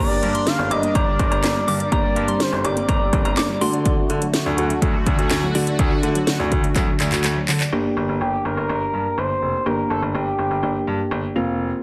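Synth-pop in G minor at 124 BPM, this melancholic, cool fragment from a longer piece moves from Gm to D and back to Gm over a straight 4/4 pulse. A smooth, nasal synth lead with vibrato carries the melody, sounding at the start and returning at 8.2 seconds, while a pure FM bell with phaser traces a high second line only in the opening seconds. Soft, round electric-piano-like keys provide accompaniment throughout, supported by a bright, resonant pad holding sustained chords and a warbling, lo-fi pluck spinning arpeggios in the background. A clear, polished baby grand piano takes the bass role, sitting up front alongside a punchy, overdriven house kit of cracking snare, metallic hats and handclaps that enters at 0.2 seconds and ends with a fill before dropping out at 7.7 seconds. Chorus colours the synths, with tape echo on the lead, bell and pluck, light reverb and digital ambience surround the mix, and the master is dense and heavily limited.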